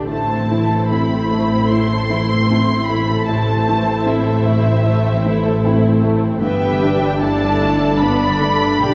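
Tender and quietly uplifting, this brief cinematic film-score passage, cut from a longer piece, moves at a rubato 76 BPM in 4/4, shifting from A minor to a Gadd9 chord near 6.4 seconds. Muted violins carry the melody from 0.1 seconds, their con sordino tone veiled and lush with vibrato, while a second violin line sits beneath. The muted violas, close and dark, fill out the accompaniment, while the cellos and a distant, soft-attack double bass section form a deep, bowed foundation, the cellos resting in the background. A felt-muted upright piano adds mellow, intimate accompaniment behind the strings, and a very quiet concert harp rings out bright fingerpicked arpeggios. The whole ensemble sits in a wet scoring-stage reverb, with lossy compression artefacts in the sound.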